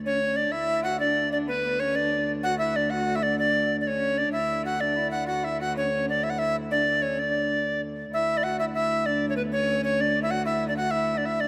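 Rustic and festive, this short medieval dance excerpt moves in a lilting 6/8 with a straight feel. A bright, reedy tenor recorder carries the melody up front, its airy wooden tone marked by tongued attacks, a touch of chiff and vibrato. Beneath it, a bowed viola da gamba holds a low drone throughout, its fretted, woody sound biting and ringing with light vibrato. A single bowed cello adds a second line in a gut-string, period-style voice, sitting further back in the blend. A lush hall reverb surrounds the trio in a rough, demo-like mix, and the music shifts into a new section around 8.1 seconds before the clip ends.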